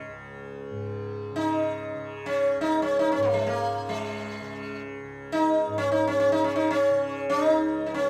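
Meditative and radiant, this short excerpt of Hindustani classical music places a bright, plectrum-plucked sitar up front, its buzzing tone and sympathetic strings ringing over a softly plucked, shimmering tanpura drone that sits well beneath it throughout the 8.1 seconds, all held in a moderate small-room reverb.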